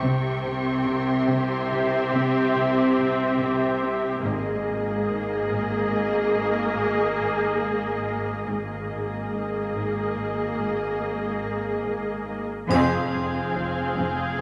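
A wet scoring-stage reverb surrounds this eerie, tense suspense cue, cut from a longer score, as veiled, lush, muted con sordino strings move at 71 BPM in 5/4 over chords of C, Absus2 and Fm. The up-front viola section carries the accompaniment beneath a dark violin melody with vibrato, while two background cello sections play a riff and a bass line. Distant double basses sit very quietly below, and a thick, saturated sine sub bass drones in the depths. A high violin texture plays until 3.8 seconds and returns alongside a second violin line at 12.7 seconds, where very quiet, close and dry taiko with heavy sticks and a bright triangle join for an accent on the Fm chord.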